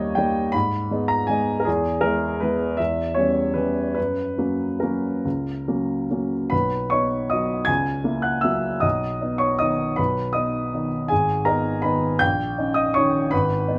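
Playful and graceful, this short classical piano waltz in 3/4 moves with a supple rubato feel, its pulse stretching and easing as it goes. A single baby grand carries the whole piece alone from start to finish, ranging from G#1 up to G#6. The instrument sounds warm and open, with long sustain, and sits up front in the mix thanks to close, detailed microphones and a light touch of reverb. The harmony drifts through minor and dominant colours such as G#m, C#m7b5/E and F# before a second pass of the opening phrase arrives at 6.5 seconds and settles onto B. Cut from a longer work, the passage closes at 13.8 seconds on a D#7/A# chord that leaves the music suspended.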